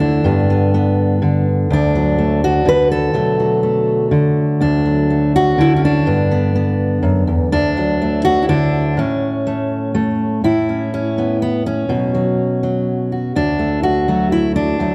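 A fingerpicked steel-string jumbo acoustic guitar opens this hopeful, gentle solo folk piece in D major at 124 BPM in a straight 3/4, its full-bodied tone sitting up front with audible finger squeak and a moderate concert-hall reverb, moving through G, D and Bm7 before a chordless moment at 9.0 seconds and a fresh passage from 10.4 seconds over Aadd9 and Bsus2 that settles on D in this short cut from a longer piece.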